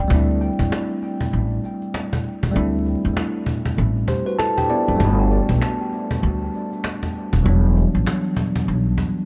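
Boom-bap hip-hop with a dark, tough mood and a swung 16th-note feel, cut from a longer piece and dressed in vinyl crackle, an echo-heavy mix and light studio reverb. A worn, slightly out-of-tune tine electric piano sits up front, filtered and trailed by dub echo, over chords moving from D7sus4 to Gmaj7 and Em7, while a woody, thumpy pizzicato upright bass holds the low end and a snappy cajon played with hard hands sits beneath. Faint, band-limited finger snaps with their own dub echo appear in the background from 5.6 to 8.2 seconds.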